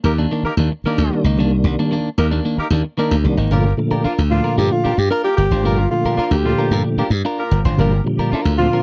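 A dry, close 1970s-style studio sound frames this hypnotic funk excerpt, where a bright, punchy slap bass sits up front with a clean, compressed picked electric guitar and a tight, warm horn section in octave doubling, a round, dark tonewheel organ adds stabs with key click, chorus vibrato and fast rotary speaker from 1.1 seconds, and a breathy, whispered alto saxophone with scooped notes and tape echo takes an intimate jazz-style solo from 4.3 seconds.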